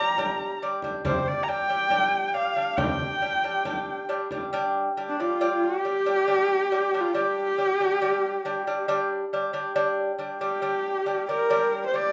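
Recorded live by a band in one room with a wet studio reverb, this windswept, solemn fragment of Mongolian folk music moves at a slow 69 BPM in 4/4 in G yu mode. A husky, focused horsehead fiddle sits up front, its bowed horsehair strings carrying the melody with vibrato, portamento and a smooth top. Beside it, a delicate fingerpicked lute with doubled gut strings plays arpeggios throughout, while a deep, large frame drum sounds distant from 0.2 to 4.5 seconds.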